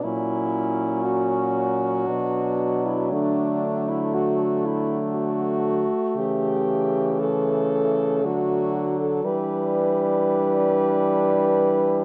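In a flexible, rubato three-four, this solemn, melancholic classical excerpt for horn quartet sets a warm, up-front French horn melody over a clear French horn second line with light vibrato and a soft attack, a vintage-toned French horn accompaniment, and a prominent French horn bass, all four sounding together from start to finish inside a wet stone room reverb and the worn, warbling pitch drift of old cassette tape.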